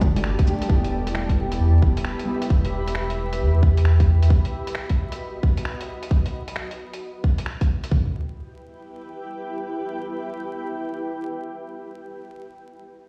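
A dark, clean electric guitar opens this rainy, ghostly future garage excerpt over a blurred, detuned granular cloud pad and a deep, round sub bass, all pumping to the sidechain, with the guitar stopping at 2.5 seconds and the bass dropping out at 4.3 seconds. An up-front electronic kit of tight kick and toms carries the swung groove beneath a muffled, pitched-down sampler kit of bongos, cabasa, finger snaps and hi-hat, both gritty with 12-bit crunch and studio reverb. Vinyl crackle and a big, bare-room ambience surround the bright, evolving pad, which lingers alone until 12.3 seconds.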